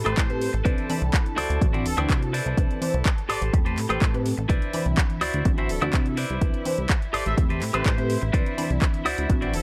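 Joyful and sunny, this filtered disco house excerpt pumps along in a straight four with a punchy, overdriven electronic kick up front, plus a house kit of handclaps, bright hats and woodblock and a plucky, dark analog bass with tube saturation, both breathing to sidechain pumping. A detuned, chorused polysynth comp with phaser and cassette-tape color circles Am9, Cmaj9 and D9 chords while a twangy, clean guitar riff carries 12-bit sampler grit. Smooth bowed strings and a distant, roomy trumpet section with tape echo sit in the background of a dry, gritty hardware mix.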